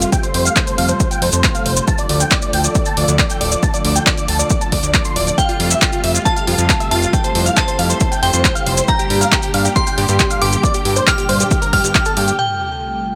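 Lightly reverberant with a faint mains hum, this euphoric uplifting trance passage at 137 BPM in F major soars on a huge, bright supersaw lead melody with delay and a lush, warbling unison pad, both pumping with sidechain alongside a fat, saturated analog bass, over a punchy overdriven kick placed up front, a dry analog drum machine of handclaps and low-pass-filtered hi-hat, and grainy, close maracas, while a glassy FM synth bell line enters at 5.4 s with chorus and delay before an electronic sub drop arrives at 12.4 s.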